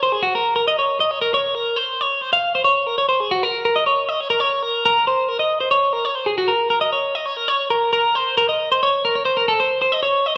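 Intricate and wistful, this rock excerpt moves in an odd 7/8 metre at 272 BPM counted in eighths, with a straight feel. A bright, clean, picked twelve-string electric guitar takes the solo from start to finish, compressed and up front, its lines sitting between Gb4 and F5 before shifting into a new section at 7.9 seconds. The guitar is bathed in a wet, large studio reverb, giving the sense of a band captured live in one room.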